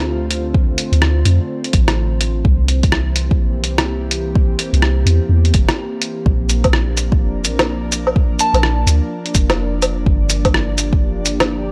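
A dry, gritty recording with transformer saturation carries this ghostly, rainy future garage excerpt at 126 BPM in a swung 4/4, where an airy, breathy pad with chorus and sidechain pumping holds sustained chords through Dm7, C7, Bb and Gm7, a soft, round 808-style bass pumps beneath it, a deep, layered electronic kick joins a muffled, pitched-down sampler-style kit of cabasa, hi-hat, rim click and woodblock up front, and a pure, warbling FM bell with tape echo sounds a lone A5 at 8.4 seconds.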